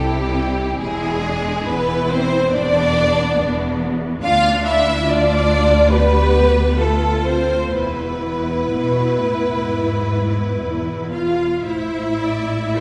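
The pulse moves in a flexible 4/4 with generous rubato, giving this slow romantic movement for string orchestra a melancholic, yearning pull. A lush violin section carries the melody with focused vibrato, while a second violin section sits up front on a clear, smooth-topped line above it. Violas fill in the accompaniment, close and rich, and a cello section anchors the bass with a bowed, vibrato-laden tone, joined from a distance by an expressive, warm double bass section. The harmony drifts from C through E7 and Bdim/D to E before settling on Am at 11.7 seconds, where a new section begins just before the passage breaks off at 12.8 seconds. A wet scoring-stage reverb places the listener further back in the room.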